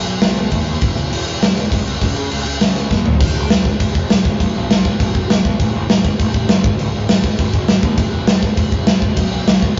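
Punk rock at 201 BPM in a straight 4/4, rebellious and upbeat, cut from a longer piece. A big, up-front acoustic drum kit with bright cymbals, a punchy kick, a medium-tuned snare, toms and crash drives it alongside a fuzzy, overdriven picked electric bass that sits lower in the mix. The opening half-time passage gives way at 3.2 seconds after a drum fill at 2.9 seconds, all captured in a rough rehearsal-room recording with light reverb and a dull top end.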